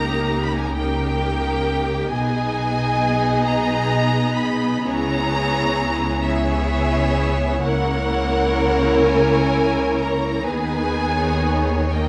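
A lush, up-front second violin section carries the most presence, its vibrato-laden bowed line sitting just beneath a focused first violin melody that sings high and smooth on top. This is a slow, elegiac Romantic movement for string orchestra in G# minor and 12/8, moving at roughly 38-45 BPM in dotted quarters with a yearning, rubato feel. Violas fill the middle with an even, smooth accompaniment, while close, expressive cellos with portamento and rich, focused double basses share the bass line. All five sections play together across the full 12.1 seconds of this fragment of a longer work, with harmony passing from D#7/C# through G#m/B, C#m7 and A#dim/C# before settling on G#m/D#. A wet concert hall reverb with a 2.1-second decay wraps the ensemble in a spacious, resonant glow.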